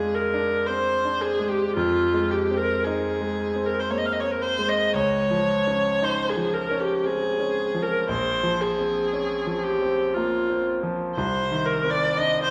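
Mysterious and wistful, this fragment of an impressionist classical duo drifts at 57 BPM in a rubato 3/4 with uneven beats, as a single bowed viola sings a rich, focused melody with vibrato, up front yet with a slightly distant quality, over brilliant, bright grand piano accompaniment, both bathed in a wet scoring-stage reverb while the harmony glides from Fm6 through Abadd9/F, Dbadd9 and Bbm9 to Cmadd9.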